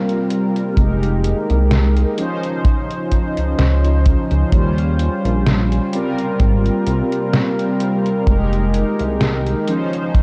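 A faded, dreamy vaporwave excerpt in Ab major at a slow 64 BPM with a light sixteenth-note swing opens on round, brassy synth chords with analog chorus and tape echo over a silky string machine in the background, as a detuned 8-bit drum machine adds hi-hat and a sampler-style snare, and at 0.8 s a tight, up-front acoustic kick and a glossy chorused synth bass join, moving through Abmaj13, Fm11, Dbmaj9 and Eb13 in a dark, cassette-tinged production with light studio reverb.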